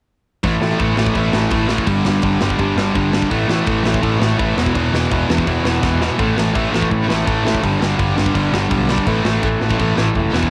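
A short, upbeat and energetic punk rock passage, cut from a longer piece, drives forward in a straight 4/4 feel. Three guitars play riffs together in the low register behind the mix: two overdriven, picked guitars with a crunchy, warm tone, and a bright, distorted, double-tracked guitar sitting a little lower in level. A picked electric bass adds a growly, round, amped bottom end. The drum kit sounds tight and polished, with bright cymbals, a medium-tuned snare and a tight kick in an airy, big room, colored by a cassette tape effect. The chords move mostly between A5 and G5 with a turn to E5, and a drum fill at 5.8 seconds leads back to A5 at 6.2 seconds. The whole thing carries the character of a home recording on cassette.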